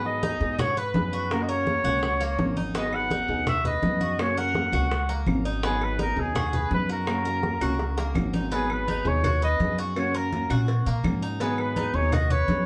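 An up-front trumpet with vibrato carries a punchy, vintage solo melody over a warm, danceable Cuban son and guajira groove, where a thumpy gut-string upright bass plays pizzicato, a fingerpicked steel-string acoustic guitar accompanies, a bright, metallic Cuban tres adds picked arpeggios on doubled strings, ringing low-tuned congas sit close, tight high-tuned bongos and cowbell stay in the background, woody claves join at 2.9 s, and a drum fill at 7.8 s leads back into the repeating G#m7 to F# vamp, heard from further back in a reverberant studio.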